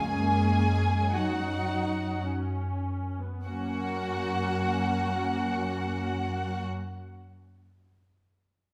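A hushed string orchestra is heard from the very first moment, with all five muted sections sounding together in a tender, lyrical classical slow movement in three-time, played with a free, rubato feel. The violins carry the melody with a warm, close, veiled tone and soft attack. A second violin line sits higher and more up front, lush and dark. Distant violas fill in the accompaniment, while the cellos, smooth on top, and the double basses, held forward on a single low note, form the bowed bass beneath. Every section plays with vibrato, and the whole ensemble is wrapped in the wet reverb of a recital hall, recorded in a church or concert hall. The music slows over the first 3.5 seconds before a new section begins there, and this brief passage, cut from a longer piece, ends at 6.6 seconds.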